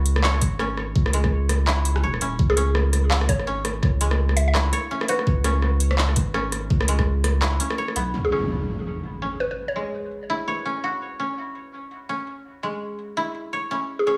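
This half-time drum and bass cut from a longer piece runs at 167 BPM in C# minor, with a swung sixteenth feel and a dark, spacious mood. A fingerpicked koto plays arpeggios throughout, its woody tone low-pass filtered and trailed by dub echo. The opening drop rests on a deep, saturated sine sub bass and a knocking electronic kick, both up front. Alongside them, a tape-tinged kit of handclaps, rim clicks and metallic, filtered hats runs to the end. A round, warbling FM pluck with a noise layer carries the melody in brief phrases, softened by chorus and dub echo. At 8.1 seconds the sub bass stops and an electronic impact hits, opening a sparser second part under light reverb.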